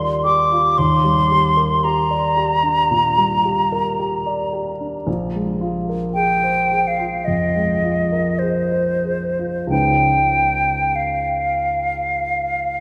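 Impressionist classical duo for flute and grand piano in a short passage from a longer piece, luminous and dreamy, unfolding at a slow, rubato pace. The dark, mellow grand piano opens the accompaniment at 0.0 seconds, and the hollow, pure concert flute takes the melody from 0.2 seconds with a tongued attack and vibrato, both sitting up front. A lush church reverb bathes the duo in a resonant hall, while the harmony drifts through rich extended chords before settling on a Db9 at 9.7 seconds.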